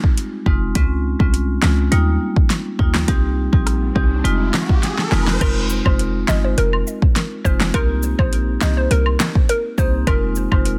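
Dancehall at 103 BPM in F minor, this bouncy, tough excerpt is cut from a longer piece and moves through Fm7, Dbmaj7, Ebadd9 and Cm before the second half turns toward Cm7 and back to Fm7. A layered electronic drum kit sits up front from the start, pairing a deep kick and fat snare with metallic hi-hats, handclaps, rim clicks and crash, all carrying a tape-tinged glow. Beneath it, a hard-mallet marimba plays boxy, percussive accompaniment that pumps against the sidechain, and a punchy, tight 808-style bass enters at 0.5 seconds with a sine body, a noise layer and quick decay. A riser and a drum fill build toward 5.4 seconds, where a hollow square-wave pluck takes the melody, detuned and ring-modulated with a filter sweep, chorus and delay. Close acoustic woodblock and cabasa join it there, all wrapped in digital ambience and a dense, heavily limited modern master.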